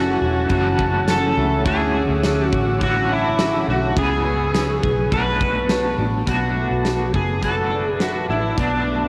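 A melancholic, ethereal dream pop passage in B dorian, cut from a longer piece, opens with an overdriven slide guitar singing the melody up front, soaked in tape echo and the soft grain of cassette tape. Beneath it, a twangy electric guitar at the edge of break-up pulses with tremolo and a subtle chorus, while a clean electric guitar sits in the background picking arpeggios through lush chorus and tape echo. A smooth, warbling analog pad with a slow attack and long release holds sustained chords over a progression from F#m7 through Dmaj9, C#m7 and Bm9, settling on Bm7 as a new section begins at 6.3 seconds. A dark, round, foam-muted fingered bass anchors the low end, and at 0.5 seconds a huge arena drum kit arrives with a punchy kick, fat snare, bright cymbals, hi-hat, ride and tambourine, playing until 8.7 seconds. The straight 104 BPM groove in 4/4 floats in moderate spring reverb and small room ambience, giving the whole a hazy home-recorded-on-cassette character.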